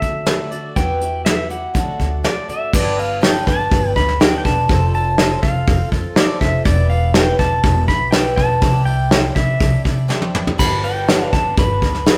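A twangy pedal steel guitar carries the melody with fingerpicked volume swells from the start, over a shimmering, octave-doubled twelve-string acoustic guitar, a woody, growly pizzicato upright bass and a brushed drum kit sitting up front, in hopeful, nostalgic folk rock and heartland rock at 122 BPM in G mixolydian. After a short opening on Dadd9, Emadd9 and D, the passage settles into a G, F, Em and Cadd9 progression from 2.7 seconds, with a drum fill at 10.1 seconds leading back to G. The rough rehearsal-room sound carries saturation and a moderate stone-room reverb, and this fragment is cut from a longer piece.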